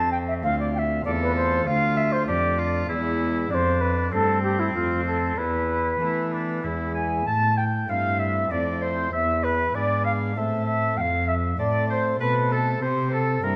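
A classical, baroque-style sonata movement with continuo in A minor, moving at 97 BPM in a straight 3/4 with an introspective, solemn mood, cut from a longer piece. A clear oboe carries the melody with light vibrato, sounding distant and roomy, while a mellow wooden flute sits up front on the second line with an airy, straight tone, soft attack and rolled-off highs. Beneath them, a chamber organ's principal chorus fills out the accompaniment with a touch of chiff, and a dark, gut-strung bowed cello holds the bass up front, all heard in a wet recital hall whose harmony turns from the opening F toward A minor when the second section begins at 7.3 seconds.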